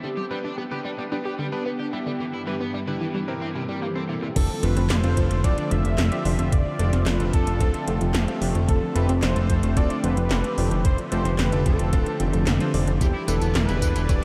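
This nostalgic, cinematic synthwave excerpt at 111 BPM opens with a swirling, phased analog pad carrying a filter sweep, joined by a very quiet unison pluck arpeggio, a bright electric grand piano with clangy bass playing stabs in the background, and a crunchy, double-tracked overdriven guitar riff drenched in chorus and tape echo. The guitar drops out at 4.3 s, and at 4.4 s a fat, detuned sawtooth bass sits up front, a thumpy sampler-style kick and 80s electronic kit with gated snare, metallic hats, handclaps, tambourine and crash set in, and a bold unison lead with vibrato carries the melody. The guitar returns at 13.0 s as the pluck falls away, all within a dreamy mix soaked in long ambient reverb, moving from G through Em7/G and C7 to F6 before settling on Em7.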